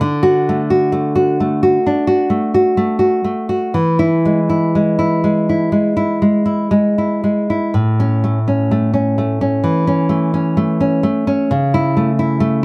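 Close, detailed microphones and light reverb put a dark-toned nylon-string guitar up front, with the faint squeak of fingers on the strings audible as it is fingerpicked. This romantic classical solo, cut from a longer piece, moves with rubato at around 58-67 BPM in 4/4 and A major, its nostalgic yet sunny mood carried through a progression from D to E, settling on A at 7.7 seconds before reaching A/C#.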